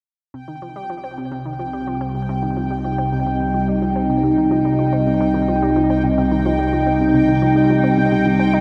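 An up-front, morphing wavetable pad carries this hypnotic, mysterious piece of ambient, sequencer-driven space music, entering at 1.2 seconds with slow-attack sustained chords in C minor, treated with chorus and its own reverb. Beneath it, a nasal, detuned analog pluck riff with chorus and delay fades in from 0.3 seconds alongside a fat, thick analog bass holding a low C, while a resonant, bubbling stepped-filter texture hovers high above. At 108 BPM in a straight 4/4 over a C minor chord, the cassette-tape recording sits in a vast, echoing space drenched in long reverb, and the clip is cut from a longer piece.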